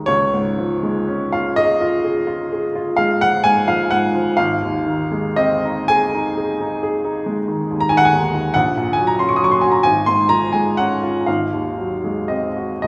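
A solo upright piano opens this brief excerpt of a romantic classical nocturne, its clear, woody tone placed up front from the first moment. The mood is tender and nostalgic, moving at a slow 42 beats per minute counted in dotted quarters within 9/8, with uneven beats and free rubato giving the line a breathing, unhurried feel. Set in D-flat major and tuned slightly high at A4 = 441 Hz, the piece spans a broad range from Ab1 up to Eb6. The harmony rests on Db before shifting to Ab at 4.4 seconds, then passes through Gb/Bb and Db/Ab to settle on an Ab7 at 11.3 seconds, leaving the phrase open as the passage ends near 12.9 seconds. The polished, present piano sits in a wet concert hall reverb whose two-second decay lends the sound a spacious, resonant halo.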